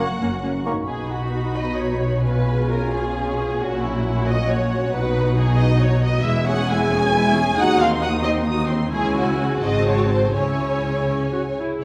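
A brief opening chord brings in an airy flute section, a clear solo bassoon and distant, softly attacked French horns, all of which fall away within the first second, leaving the strings and a ringing concert harp to carry this spirited, dramatic romantic orchestral excerpt in a lilting 6/8 with flexible rubato. A lush, smooth-topped violin section sings the expressive melody over a darker, up-front second violin line, while violas with vibrato and portamento fill the accompaniment, woody cellos sit in the background, and a focused double bass section anchors the low end. The cheerful mood takes on a more brooding minor shade from 6.3 s, and a generous scoring-stage reverb gives the ensemble a spacious glow.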